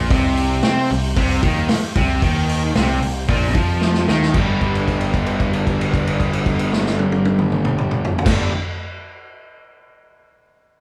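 Two double-tracked electric guitars, one biting and the other sludgy and set back in the mix, open this confident, swaggering classic rock passage at 113 BPM in G mixolydian with a fuzzy overdriven picked bass and a very quiet tonewheel organ holding sustained chords through a slow rotary speaker with audible key click, while an up-front vintage kit with dark cymbals, a tight kick and a gritty, rolled-off edge carries the straight 4/4 feel and plays a fill at 3.8 seconds before the harmony shifts from C5 to G for a held note from 4.3 seconds, all in the light reverb of a band playing live in one room.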